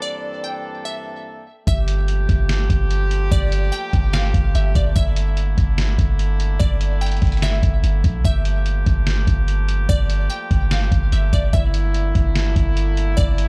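Spacious and hazy, this atmospheric cloud-rap cut from a longer piece moves at 146 BPM in a half-time 4/4 feel, centred in G dorian. It opens with a glassy wavetable pluck carrying the melody in a crystalline, detuned voice treated with chorus and analog delay, over a distant, roomy brass ensemble holding sustained chords with a pumping sidechain, while a filter sweep runs through the first 1.7 seconds on a C13/G chord. At 1.7 seconds a deep, boomy 808-style bass enters up front with a noise layer, its fast-attack notes decaying between G1 and Bb1, alongside a trip hop sampler-style drum kit of thumpy kick, medium-tuned snare and hi-hat, compressed, pitched down and re-recorded in a small room. The harmony then alternates between Gm9 and Gm69 for the rest of the passage. The pluck and brass sit well back in the mix, behind the bass and gritty drums, inside a digital ambience with a dry, rough hardware character.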